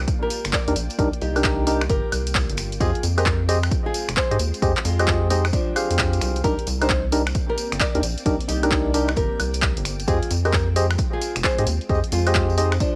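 Through the light reverb and cassette haze of a home recording, this skippy, late-night two-step garage excerpt in C minor swings at 132 BPM, with an overdriven electronic kick and a punchy, dry analog drum machine of snaps, claps, hi-hat and woodblock sitting up front beside a rubbery, bouncy square bass, while a woody, fingerpicked nylon-string guitar carries the melody, hollow organ-like stabs with chorus punctuate from 0.7 seconds, a silky, very quiet string machine holds Cm7 and Fm7 chords, and a jingly tambourine glints in the background.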